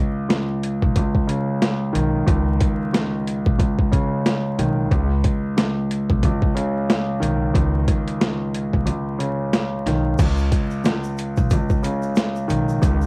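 Gritty and tough, this boom-bap hip-hop excerpt rides a swung 4/4 groove over a dark, mellow concert grand piano that sits low and up front on a C#sus2 chord, its action noise audible through filtering and cassette-tape coloring. A pitched-down, compressed sampler-style drum kit with a thumpy kick, high-tuned snare, hi-hat and crash is overdriven and re-recorded in a small room, while a woody pizzicato upright bass holds the low end; the kick drops out from 8.9 to 10.2 seconds. At 10.2 seconds a grainy tube shaker slips in deep in the background, and light reverb, vinyl crackle and a home-cassette character color the recording.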